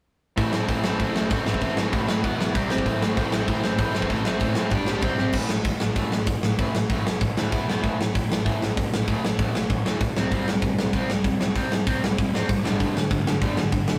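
Punk rock at 193 BPM in A minor, this short cut from a longer piece feels urgent and raw, captured as a rough rehearsal-room recording with light reverb. An up-front, bright overdriven semi-hollow guitar drives a riff through the whole 14 seconds, joined until 5.3 s by a second overdriven electric guitar that sits warm and in the background. Underneath, a very quiet picked bass adds a growly fuzz tone, while a big acoustic drum kit with bright cymbals, a punchy kick and a medium-tuned snare sounds natural and close in a large room. A drum fill at 5.2 s leads into the second section, where the harmony shifts to power chords on A, E, C and G. The guitar parts carry the energy over a propulsive straight beat.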